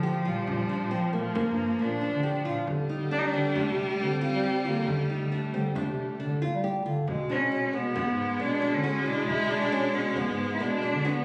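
Contemporary instrumental chamber music in 5/4, pensive and restless and cut from a longer piece, where an up-front bowed cello carries a smooth melody with vibrato over a focused viola second line, fingerpicked nylon-string guitar arpeggios and a mellow, subtone bass clarinet bass, with a deep, saturated frame drum in the background, heard through a moderate scoring-stage reverb and captured on a phone in the room.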